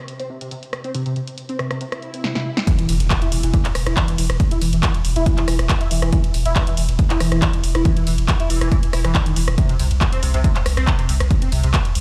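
This driving peak-time techno cut opens straight into an intense, relentless groove at 139 BPM in 4/4. A punchy analog drum machine lays out handclaps, hi-hat, ride cymbal, rim click and snare, with a short room on the snare, clap and hats, low-pass filtering on the snare, hats and cymbals, and sidechain pumping on the hats and cymbals. Over it, an overdriven synth lead plays a gritty, screaming, guitar-like riff built from detuned sawtooth and pulse waves, colored by tube saturation, ensemble chorus, vibrato, a moving notch, delay and its own sidechain pumping. A background electronic swell rises at 2.0 seconds under a brief drum fill, then an impact hits as the drop lands at 2.7 seconds with a punchy, tape-toned electronic kick. A deep, thick sine sub bass joins at 2.9 seconds, overdriven, low-pass filtered and pumping, with the kick and bass standing loudest in a dry mix that carries a faint stone-room reverb, as if played on a big sound system in a bare room.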